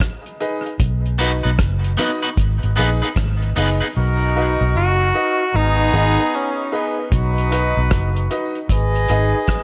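An edgy tenor saxophone carries the melody up front from 4.8 to 7.1 seconds in this laid-back, hazy dub reggae excerpt at 76 BPM in B major, its light vibrato trailing into dub echo. Beneath it, a cloth-damped drum kit plays hi-hat, tight kick and rim click with a dry, thuddy, rolled-off sound and a swung sixteenth feel. A vintage, foam-muted fingered bass sits round and punchy near the front. A baby grand piano adds brilliant stabs with long sustain fed into dub echo, and an electric guitar at the edge of break-up supplies twangy, picked accompaniment with harmonic tremolo during the opening break. A clear horn section enters at 4.0 seconds with a vintage second line, while the chords move between G#m and B, all set in light reverb and small room ambience.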